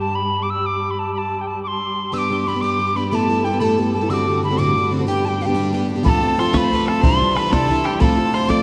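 A mellow wooden whistle carries the melody up front from the very start of this bright, rollicking Celtic jig in 6/8 at 122 BPM, set in G mixolydian, with its airy, soft-attacked tone floating over a dark, lush symphonic string drone that holds until 6.1 seconds. A picked twelve-string acoustic guitar enters at 2.1 seconds with a shimmering, octave-doubled accompaniment, and near the close a bright, nasal fiddle adds a second line while a boomy bodhran joins at 6.1 seconds as the harmony shifts toward F and Cadd9. The whole brief excerpt, cut from a longer piece, sits in a vast, echoing cathedral space.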